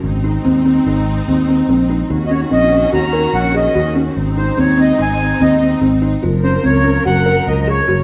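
A lush, bowed string section holds sustained chords beneath woody, thumb-plucked kalimba arpeggios and a dark, punchy fretless electric bass in this hopeful, shimmering piece of contemporary chamber music in 5/4 at 145 BPM, moving between Ab, Ebm7 and Gbmaj7 in Ab mixolydian. At 2.3 seconds a reedy, up-front accordion takes the melody, its slow beating adding gentle movement above the strings' smooth vibrato. A moderate recital hall reverb surrounds this short passage, cut from a longer piece.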